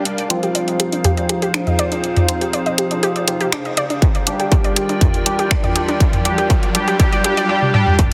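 Heavily compressed, radio-like and lightly reverberant, this short cut from a longer melodic techno piece runs at 121 BPM in 4/4 with a straight feel in G phrygian, cinematic and dramatic in mood as it moves from Fm7 to Gm7. An edgy, nasal sawtooth polysynth with oscillator sync sits up front, firing bright stabs through chorus, delay and sidechain pumping, while a detuned, unison pluck spins lush arpeggios with ring modulation and delay. Both carry filter sweeps across the whole build-up. Beneath them, a morphing, warbling wavetable pad holds vintage-tinged chords with a slow attack, chorus and its own reverb, and a round analog bass murmurs very quietly at the bottom. An overdriven techno kit of finger snaps, hi-hat and toms, with pumping on the toms and hats, drives the groove, and a distorted, layered electronic kick joins at 4.0 seconds. A background riser, swell and impact shape the build, ending with a drum fill at 7.6 seconds.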